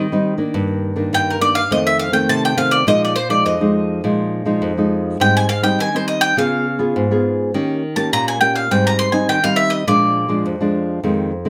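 A bowl-back mandolin and a nylon-string guitar begin together in this festive, playful samba at 103 BPM in a straight 4/4. The picked mandolin carries the melody up front, its doubled strings giving the line a warm, full tone as it moves between Bb4 and C6. Beneath it, the thumb-plucked classical guitar supplies a warm accompaniment from F2 to Ab4. The harmony opens on a rootless Abmaj7 and travels through Ebmaj7/G, F7, Bb7sus4, Db7 and Eb7 before landing on Bb7. The mandolin stops at 10.4 seconds, while the guitar continues until 11.5 seconds. Close, detailed microphones and a light reverb keep both acoustic instruments intimate in this short passage, which is cut from a longer piece.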